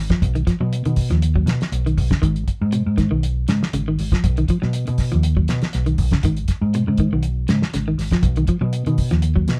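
A round, hollow-body short-scale bass, fingered and up front with an amped, dark tone, anchors this driving, intense afrobeat excerpt at 120 BPM in 4/4, moving through a B to G#m progression. A cloth-damped acoustic kit with a fat snare, tight kick and rolled-off top sits dry and close on hi-hat, kick and snare, while an electric guitar at the edge of break-up plays slightly gritty, fingered arpeggios in a low register. The band sounds like it is playing live in one room, with light reverb over the whole.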